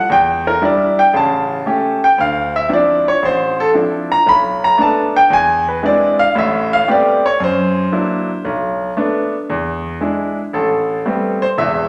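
Jazz in A minor at 115 BPM with a smoky, swinging feel, this excerpt features a bright, brilliant grand piano up front from 0.0 to 11.9 seconds, soloing until 10.5 seconds and ranging from E1 to B5 through a ii–V progression of Em7b5, A7, Dm9 and onward to E7 before landing on Am9 at 10.5 seconds, all bathed in a wet large-studio reverb.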